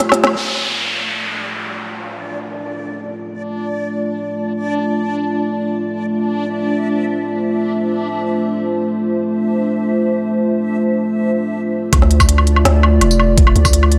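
Half-time drum and bass, heavy and dark, in which a detuned, wave-folded analog pad with chorus and sidechain pumping holds sustained chords throughout while a downlifter and a reversed, granular, bright swelling texture drift through a lush hall reverb, until a drop at 11.9 seconds brings back the organic electronic drum kit with its woody snare, crisp hats, tambourine and woodblock, joined by an overdriven, knocking electronic kick and a deep, mellow 808-style bass.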